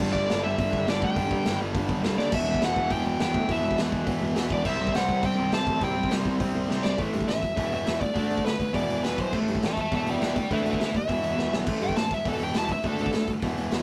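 Up front, a dark, high-gain lead guitar tears through this urgent, raw punk rock excerpt, breaking into a solo at 7.0 seconds over a punchy, saturated garage drum kit with crashing cymbals and fills, a crunchy overdriven rhythm guitar and a tight, bright distorted guitar pounding out riffs, and a growly overdriven picked bass in the background, all caught in a rough rehearsal-room recording with light reverb.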